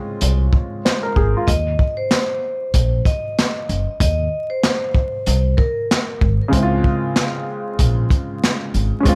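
A dark, moody boom-bap hip-hop excerpt at 95 BPM with a swung 16th feel opens on a worn, mellow concert grand piano through cassette-tape coloring on a Dbmaj7, joined at 0.2 seconds by a woody pizzicato upright bass and a crunchy, saturated breakbeat kit of tight kick, snare, hi-hat and handclaps, before a ringing, metallic vibraphone carries the melody with delay from 1.5 to 5.9 seconds and the piano returns at 6.5 seconds, all beneath light reverb and vinyl crackle.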